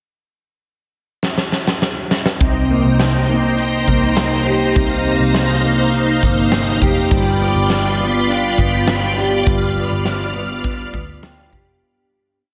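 In this melancholic, haunting dream pop piece at 102 BPM in C minor, a huge arena drum kit opens with a fill at 1.2 seconds before its punchy kick and fat snare settle into a simple, spacious backbeat. At 2.4 seconds, shimmering, bright string-machine violins arrive with up-front sustained chords, together with a mellow, dark fingerpicked electric guitar roll with chorus and tape echo and a round, foam-muted vintage bass. From 7.1 seconds a ringing, band-limited vibraphone scatters background notes as Cm7 gives way to G7, all bathed in a huge ambient reverb before the fade-out from 9.5 seconds.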